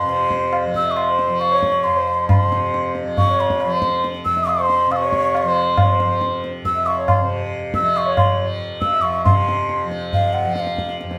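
A straight 4/4 pulse at 138 BPM from low-tuned, short-ringing tabla anchors this serene, devotional Hindustani classical excerpt, where a close, up-front bansuri with an airy, hollow tone and crisp attack carries the melody over a reedy, breathing pedal harmonium second line that drops out at 9.3 s, all above a bright, buzzing, shimmering tanpura drone, with the live group sharing a wet stone room.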